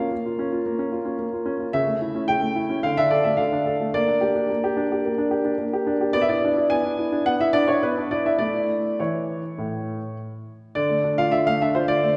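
A solo baby grand piano opens this short classical-period sonatina passage, its tone warm and open with a long sustain that lets each chord ring. The mood is cheerful and elegant, moving in a steady four-beat metre with a straight feel. The piano sits up front, set in a wet concert hall reverb whose 2.1-second decay adds a generous halo around the notes. The harmony begins on B-flat minor and passes through A over C-sharp, D minor, G minor over B-flat and E7 over B before settling on A. At 10.7 s a new section begins on D minor, and the passage is cut off at 12.2 s, partway through a longer piece.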